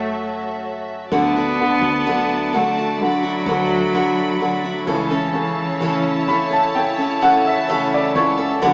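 This pop ballad moves at a slow 64 BPM in a straight 4/4, its mood emotional and heartbroken, in a short passage cut from a longer piece. A single bowed cello carries the melody with vibrato and portamento, its woody tone sounding distant yet up front, and it falls silent at 6.8 seconds. A clear concert grand piano with deep bass provides the accompaniment throughout, adding a fill from 5.8 seconds, while a studio string section holds soft-attack sustained chords, bowed sul tasto for an intimate, close sound. Beneath them, a growly, round fretless electric bass anchors the low end, and from 1.1 seconds a picked steel-string dreadnought guitar joins with full-bodied arpeggios. The harmony moves from F#m7 to D and then to A/C#, and the whole band plays live in one stone room with a wet reverb and a small speaker sound.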